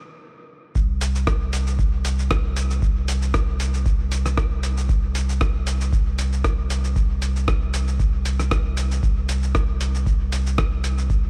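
A round, sine-like sub bass sits up front on a low C, its tube saturation and sidechain pumping carrying this hypnotic, meditative dub techno excerpt from 0.8 seconds, after a brief silence, until 11.3 seconds. A deep analog electronic kick enters alongside it in 4/4 at 116 BPM. Beneath it, a muffled, tape-flavoured, compressed sampler-style kit adds hi-hat, rim click and shaker with a gentle 54% swing on the 16ths, both drum parts touched by studio reverb within an otherwise dry mix tuned to A4 = 441 Hz.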